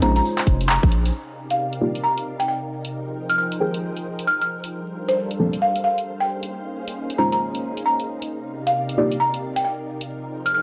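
A dry, gritty hardware sound with light reverb and a bed of vinyl crackle opens this short, skippy late-night cut of two-step UK garage, its sixteenths swung over minor eleventh chords. A buzzing, woody marimba carries the melody, while a silky string machine with ensemble chorus, sampler grit and sidechain pumping holds long chords underneath. A deep, nasal chord stab with chorus plays from the start until 9.2 seconds, and a filter sweep runs across it from 1.1 seconds onward. The opening moments are the busiest: a thick, saturated sub bass, a grainy, bright shaker and a tight, up-front electronic kick all sound only in the first second or so, with a band accent at 0.7 seconds. Throughout, a punchy, tape-tinged analog drum machine carries the groove with congas, handclaps and hi-hat, its snare, hats and percussion dulled by low-pass filtering.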